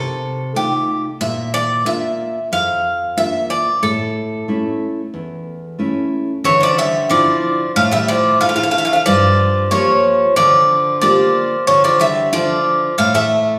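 A metallic, picked bouzouki carries the melody up front in this cool, moody Greek folk excerpt at 92 BPM in 4/4, its double strings, some doubled at the octave, ringing clearly over a fingerpicked classical nylon-string guitar that also sits forward with a warm accompaniment. At 6.4 s a second bouzouki enters with a low supporting line as the harmony moves from F7, Bb and A to Dmadd9, Gm7 and Dm. The whole band sounds as if placed in a church or concert hall, wrapped in a wet recital-hall reverb.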